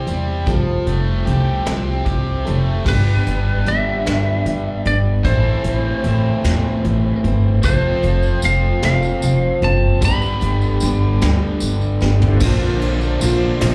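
A slow, lilting 6/8 sway carries this hopeful slice of folk rock and heartland rock, cut from a longer piece and heard as a live club gig through the venue's PA. Brushes on a distant, roomy kit with a punchy kick and hi-hat, ride and crash sit under a woody pizzicato upright bass that stands up front, while a picked steel-string acoustic guitar with audible finger squeak stays in the background. A double-tracked, compressed overdriven electric guitar plays the riff with slapback echo, and at 2.9 seconds a twangy, slightly broken-up lead guitar takes the melody, also touched by slapback. A jingly, vintage-sounding tambourine joins at 7.6 seconds, and as a brief drum fill rolls in, a reedy tonewheel organ with key click and slow rotary speaker adds sustained chords at 12.1 seconds. The chords move from Fadd9 through G, Am, F and G again before landing on a Bbadd9 that gives the close a lifted, open feel.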